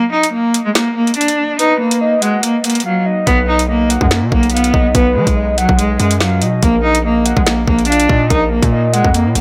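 Dark and cold, this drill cut runs at 143 BPM in 4/4 with a half-time feel, and it is a short slice taken from a longer piece. A rich, bowed cello carries the melody from the very start, its single player heard up front with vibrato and a focused tone, softened by a low-pass filter and trailed by dub echo. The electronic drill kit enters at 0.2 seconds, pairing a hard-clipped kick and woody snare with metallic hats and finger snaps, all sitting forward with a tape-warm character, before the drums drop out briefly from 2.9 to 3.3 seconds. Above the cello, a soft octave-layered synth lead plays a second line in a round, triangle-and-sine blend with a sub octave, colored by chorus, phaser and dub echo. The distorted 808-style bass arrives at 3.3 seconds, heavy and saturated with a noise layer and a fast attack that decays, under chords moving from B5 to Bb5. Light reverb and plenty of echo give the mix a shadowy depth.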